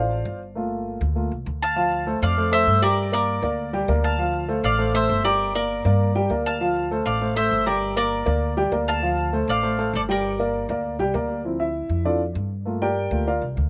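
This salsa piece is fiery and danceable, cut from a longer performance and set in a straight four-beat metre. A vintage-toned upright piano with a smooth, woody character opens the passage as the featured voice, comping through minor chords with a slapback echo. Beneath it, a pizzicato upright bass with steel strings holds down the low register from the very start. A picked bowl-back mandolin enters at 1.6 seconds to carry the melody, its doubled strings ringing warm in the upper range and touched by the same slapback echo. The mandolin drops out around 11.3 seconds, handing the spotlight back to the piano for the closing stretch. All three instruments sit up front in a dry, open-air sound, giving the acoustic playing an immediate, lively feel.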